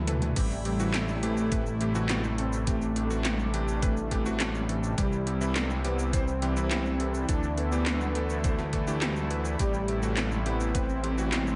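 A lightly reverberant, digitally ambient mix opens this driving, cinematic synthwave excerpt in A minor at 104 BPM, where a short drum fill of gated, overdriven 80s electronic pads with metallic hats and handclaps leads into a thumpy sampler-style kick at 0.4 s, a fat, detuned sawtooth bass sits up front with sidechain pumping under a smooth chorused pad in the background, clangy electric grand piano stabs ring through delay, and a round, dark synth brass carries the melody over chords moving from Am7 through C and Dsus2 back to Am7.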